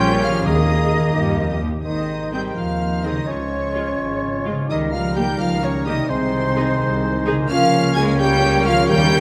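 Set in a rolling 6/8, this fast, stormy romantic movement for full orchestra is cut from a longer piece and carries a dramatic sweep from its first bar. High violins carry the melody with smooth, even vibrato. Beneath them, a pure, metallic flute, a clear oboe, a distant clarinet and a second, lush violin line weave supporting parts. A mellow bassoon and intense violas fill out the accompaniment. Dark French horns and very quiet, tight trombones hold sustained chords, a ringing harp spins arpeggios, and rich cellos join focused double basses on the bass line. Soft-mallet timpani add round strokes from 0.5 to 1.1 seconds and again at 8.9 seconds, and the whole ensemble sits in a wet stone room as the harmony settles from a suspended opening chord into a broader, flowing progression.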